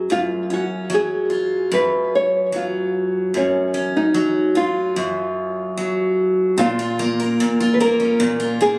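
Sunny and easy-going, this short pop fragment at 74 BPM in 4/4 pairs a dark, small fingerpicked nylon-string guitar carrying the melody with a touch of delay and a bright, full-bodied jumbo steel-string acoustic picking the accompaniment, both up front, shifting from C#/F# to A#m at 6.6 seconds, all captured on a phone in the room with light studio reverb and compression.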